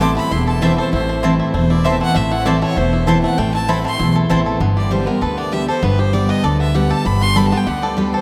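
A straight 4/4 pulse at 196 BPM carries this rustic, haunting bluegrass excerpt, which moves from A minor to G at 4.6 seconds. A clear, biting fiddle, bowed by a single player with a nasal, earthy edge, shares the melody with a mellow, twangy banjo picked with fingerpicks. The up-front jumbo acoustic guitar supplies full-bodied picked accompaniment, while the pizzicato upright bass underneath sounds woody, dark and growly. A round, double-strung mandolin adds stabs from the background before dropping out at 4.4 seconds. The whole recording sits in a vast, echoing cathedral reverb that gives the rustic string band an eerie, cavernous glow.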